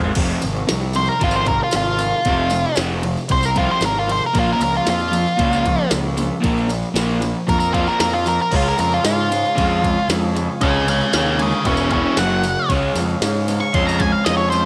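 A straight 4/4 pulse at 115 BPM drives this menacing, raw garage rock excerpt in F minor: a drum fill opens it, and a minimal click kit with a soft kick, tiny snare, toms, crash and ride sits in a large room beside a jingly tambourine in the background. A punchy fuzz bass and a crunchy, double-tracked overdriven guitar riff carry the chords from Fm to Bbm to Db, while an up-front octave-fuzz lead guitar with a dark, distorted tone solos from 1.0 seconds. After a brief touch at the very start, a mellow, very quiet vintage combo organ returns with sustained chords from 8.5 seconds, all under light reverb.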